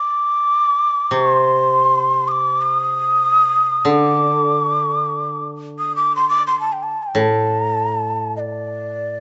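This fragment of Japanese traditional chamber music unfolds in free time in D, using the sen scale, with an austere, calm mood. A breathy, hollow bamboo shakuhachi carries the melody from the start, ranging from D5 to Eb6, its end-blown tone marked by a crisp chiff on each attack, vibrato and lifted highs. At 1.1 seconds a koto joins in accompaniment, plucked with fingerpicks in a low register from A2 to D3, its sound bright, dry and woody. Both instruments sit up front, though the shakuhachi stands clearly louder than the koto. A moderate recital-hall reverb surrounds the pair, and the overall production is dark and warm until the fragment ends at 9.2 seconds.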